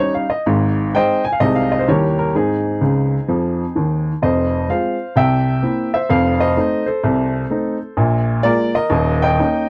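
An up-front upright piano with a woody tone and long sustain plays solo stride jazz in Ab major at 128 BPM with a swung feel, playful and exuberant, ranging from Eb1 to Ab5, adding a fill at 2.8 s before moving at 4.2 s from Ab and Eb7b9 harmony into a passage through Fm, C7 and F7, all captured in a dry, close 1970s-style studio sound with light reverb.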